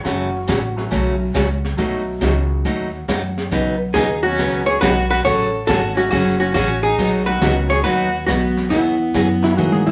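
A miked and amplified archtop guitar carries the melody from 3.9 seconds, its clean, hollow-body tone dark, compressed and up front, while a clear fiddle with light vibrato enters at the same moment to bow a focused second line beneath it. This is down-home, swinging western swing at 139 BPM in 4/4 with a strong eighth-note swing, and the brief excerpt moves from F#m through B7 and Badd9 to F#madd9, B and Eadd9. A pedal steel guitar, played with fingerpicks and a slide and shaped by volume swells, appears only in the opening second and again near 9.4 seconds. Underneath, a picked parlour acoustic guitar sounds bright and boxy up front, a woody upright piano sits in the background with audible action noise, and a thumpy gut-string upright bass plucks low and close. A smooth jazz brush kit with a high-tuned snare and boomy kick adds a rolled-off touch, closing on a drum fill from 9.6 seconds, all heard as a band playing live in one room with moderate studio reverb.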